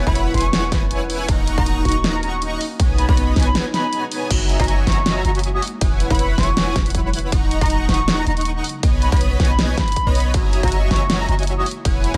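A bold, fat polysynth riff of detuned sawtooth and square waves with a sub octave and analog chorus leads this euphoric, playful future bass excerpt, pumping against the sidechain at 159 BPM in a half-time feel with a light 16th-note swing in B major. Above it, a distant silver concert flute carries the melody with vibrato and tongued notes, its pure metal tone roughened by vintage 12-bit sampler grit and trailed by dub echo. A punchy, layered electronic kick and a big-room dance kit with a huge snare, hi-hat, ride and crash drive the drop, while a deep, boomy 808-style sine bass with a dark noise layer decays underneath. A warm, fingerpicked concert harp rings with arpeggios in the background until 7.2 s, and a very quiet, ethereal pad with a slow attack and long release enters at 5.0 s, adding mellow sustained chords. The harmony cycles through E69, D#m7, B69 and F#13, with a brief break at 3.5 s before the drop repeats, all set in a digital ambience.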